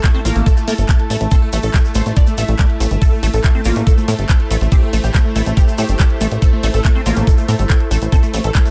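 A knocking, up-front electronic kick drives this psychedelic, driving psychedelic trance excerpt at 141 BPM in A phrygian, joined by a layered electronic kit of handclaps and hi-hat, a grainy tube shaker, a punchy, funky plucky analog bass from 0.3 s, a squelchy, resonant liquid acid bass riff with chorus and tape echo, detuned supersaw stabs carrying the melody through phaser, pumping and tape echo, a morphing wavetable pad holding chords with phaser and built-in reverb, and a breathy, soft pad of chorused texture, all in a fairly dry mix.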